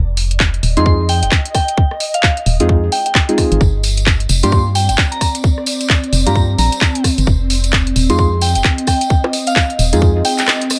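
Lightly reverberant digital ambience frames this late-night, soulful two-step UK garage excerpt at 131 BPM with swung 16ths, where a hollow, organ-like FM bass and a tight, up-front electronic kick anchor a garage kit of bongos, handclaps, hats and rim clicks, while deep, nasal chord stabs with chorus and delay and a pure, warbling synth bell with chorus, phaser and delay sit alongside an ethereal, detuned, sidechain-pumped pad, a distant, jingly tambourine joins at 3.6 seconds, and the harmony moves from Fm7 to Gm7 and back.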